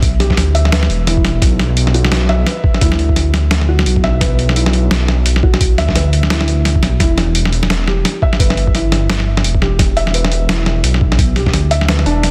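Spacious yet heavy, this excerpt from a longer half-time drum and bass track moves at 172 BPM in 4/4 with a swung sixteenth-note feel, sitting in E minor. A felt-muted upright piano plays soft, intimate arpeggios between D4 and E5 through a delay, its thick felt giving a mellow tone with short sustain. Beneath it, a dark detuned saw bass rumbles deep and up front from E1 to D2, its unison voices beating against each other with a fast attack and long sustain. A boom bap sampler-style kit supplies hi-hat and a medium-tuned snare that sounds gritty, pitched down and tape-warm, with soft clipping on the snare, while a thumpy electronic kick, re-recorded in a small room, drops out at 11.5 s. The harmony moves from Em to Bm at 1.4 s and returns to Em at 7.0 s, all under light reverb and a dense, heavily limited modern master.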